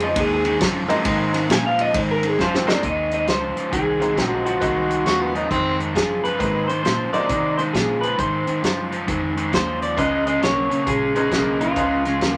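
A swung shuffle at 134 BPM in 4/4 drives this laid-back, swaggering electric blues excerpt in Ab mixolydian, moving from Ab7 to Db7. A picked guitar through a small old amp carries the slightly broken-up, lo-fi melody, opening with a clean solo capped by a drum fill at 2.4 seconds, while a dark, overdriven guitar riff, a round, foam-muted bass and a natural country kit with a fat snare and boomy kick hold the groove, and a jangly tack piano joins at 0.9 seconds. A raspy, growling tenor saxophone cuts in briefly at 5.1 seconds, and the whole performance sits in a wet small room.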